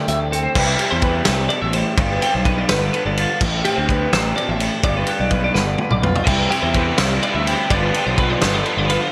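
This restless excerpt of math rock and midwest emo opens on a bright, twangy twelve-string electric guitar spinning clean, compressed arpeggios high in its range, colored by analog chorus and delay. Beneath it, an electric guitar through a small old amp plays slightly broken-up accompaniment, while a round, fuzzy picked bass with overdrive holds the low end. A loose indie drum kit sits up front with a punchy kick, dark cymbals and a gritty, saturated character, moving in 6/8 at 84 BPM counted in dotted quarters. The intricate harmony drifts from D9sus4 through Cmaj7, G7 and Am7, and a drum fill at 5.6 seconds leads into the entry of a double-tracked overdriven guitar riff with ensemble chorus at 6.2 seconds. A moderate plate reverb and small room ambience frame the bright 1980s-style digital production.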